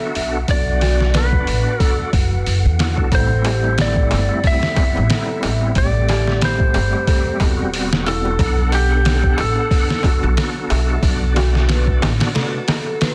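Melancholic and brooding, this trip hop excerpt moves at 91 BPM in 4/4 with a light 16th-note swing, cycling from Bm7 to Am7 and back to Bm7. A sampler-style drum kit sits up front, pitched down, muffled and overdriven, with a thumpy kick and a medium-tuned snare, alongside a woody pizzicato upright bass with steel strings. A twangy lap steel guitar carries the melody with slide and tape echo, while a reedy tonewheel organ with key click, chorus vibrato, tremolo and fast rotary speaker fills in the harmony. In the background, an eerie, inharmonic FM bell plays arpeggios through chorus and phaser, and a breathy, wind-like noise layer hovers very quietly on a single sustained pitch. A metal-shell darbuka played with hard hands enters at 3.1 seconds behind the mix, and a short break arrives at 12.4 seconds, with the whole piece sitting in a digital ambience under a dense, heavily limited modern master.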